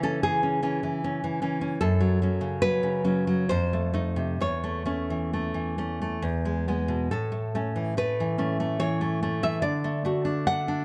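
A nylon-string guitar plays alone throughout this brief romantic piece for solo classical guitar, its fingerpicked tone full-bodied and deep, set up front in the sound. The mood is warm and nostalgic, moving in 3/4 at roughly 65-77 BPM with a freely breathing rubato feel. Though the key is A major, the harmony opens on C#m and drifts through F#m and a colouring F7 before settling toward A/E, E and A, and closing on D at 9.6 seconds. The guitar ranges from E2 up to F#5, giving the single instrument a rich spread of low and high voices. Close, detailed microphones and a light reverb frame the playing intimately in this short excerpt cut from a longer work.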